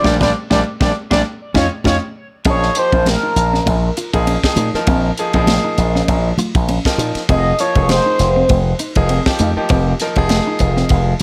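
Slick and funky, this electric jazz fusion excerpt in a lightly swung 4/4 opens with a band accent and a drum fill, while an expressive sawtooth synth lead, colored by chorus, phaser and tape echo, is heard from the start and takes a smooth, vibrato-laced solo from 2.5 seconds. Underneath, a punchy slap bass with an envelope filter sits up front beside a crisp fusion kit with a high-tuned snare and tight kick, while a brilliant concert grand piano supplies polished accompaniment. A clean, compressed electric guitar with analog chorus adds background stabs, and damped, thin-skinned congas played with soft hands sit close and dry behind the band, all in light reverb over chords moving from Gm7/Bb to Fm9.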